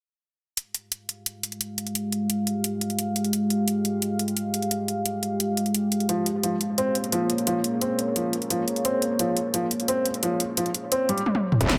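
Opening at 0.6 s with an overdriven, up-front drum and bass kit of cracking snare, bright hats and toms, this futuristic, aggressive F minor excerpt of dark technical drum and bass at 174 BPM adds a deep, moody ambient pad with chorus and sidechain pumping holding Fmadd9 and then Bbm7 chords, a soft, felt-muted upright piano with audible action noise playing dub-echoed arpeggios from 6.1 s, and, after a drum fill, an electronic impact, a tight overdriven kick and a metallic, wobbling FM bass with tube saturation at 11.6 s, all set in a lush hall reverb.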